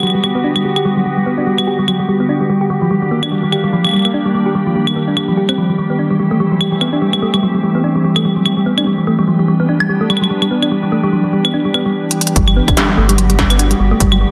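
Moving along at 146 BPM in 4/4 with a 56% swing on the sixteenths, this intricate, wistful IDM excerpt is set in G major and cut from a longer piece. An industrial drum kit of claves, crisp hats and a clanging snare sits up front from the start, sounding tape-warm and re-recorded in a large room, and a drum fill at 12.2 seconds leads into the next section. Over it, a glassy FM pad holds sustained chords, ethereal and warbling with ensemble chorus, built-in reverb and sidechain pumping, while a round, tine-like synth pluck with a thumb-piano quality spins gentle arpeggios through chorus, cassette tape coloring and tape echo. The harmony moves from Gmaj7 through Ebmaj7, C6 and Em7 before returning to Gmaj7 at 12.4 seconds, where a deep, round sine sub bass and a heavy electronic kick join for the closing stretch. An echo chamber reverb with a 2.4-second tail frames the whole, and the master is dense and heavily limited in a modern style.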